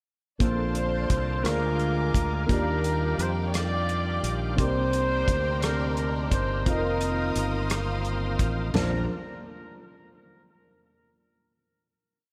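A reverent, jubilant slow gospel piece in a dreamy, reverb-soaked mix opens with a gritty, growling trumpet playing call phrases with scooped notes over a horn section's period phrases, a dark, mellow grand piano holding chords with grace notes, a bright, lightly overdriven tonewheel organ pad turning on a slow rotary speaker, a lush, distant bowed string section, a round fingered electric bass with slides, and an up-front soul drum kit with a tight kick and rolled-off top keeping a six-eight groove, the horn section dropping out at 8.1 seconds before the band rests on a final chord from 8.7 seconds.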